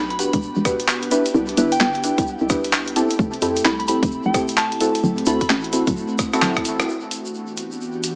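A soft, pure synth bell carries the melody high above a hollow, knocking FM bass from the very start, the bell glazed with chorus, phaser, tape echo and a vintage 12-bit sampler grit before it drops out at 5.5 seconds. This is a moody, bouncy UK garage groove in the two-step style, running at 130 BPM in E minor with a swung sixteenth-note feel and a slightly flat tuning. An ethereal, airy pad holds sustained chords through Em9, Cmaj9, Fmaj7 and D7, breathing with sidechain pumping under its ensemble chorus and built-in reverb, while deep, warbling, detuned chord stabs sit up front with chorus and tape echo. A gritty, pitched-up, sampler-style breakbeat kit of handclaps, hi-hat and rim click drives the rhythm alongside a tight, layered electronic kick, with a grainy tube shaker tucked in the background. A drum fill and a band accent lead into a brief closing section at 6.9 seconds, where the pad, kit and shaker carry on as the music returns to Em9. 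The mix is echo-heavy with a moderate plate reverb and a small-speaker character, and the clip is cut from a longer track.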